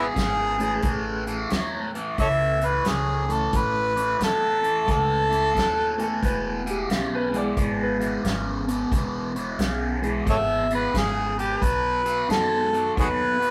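An overdriven harmonica with scooped notes, tongue slaps and light vibrato leads this gritty, swaggering electric blues shuffle in E major at 89 BPM, over a bright, phaser-tinged guitar riff, a woody pizzicato upright bass, a natural country drum kit with punchy kick and fat snare, and a barky reed electric piano with fast tremolo; a clear upright piano adds a polished second line from 6.0 to 8.5 seconds before the harmonica returns at 10.3 seconds, all in a rough rehearsal-room sound with small-room reverb.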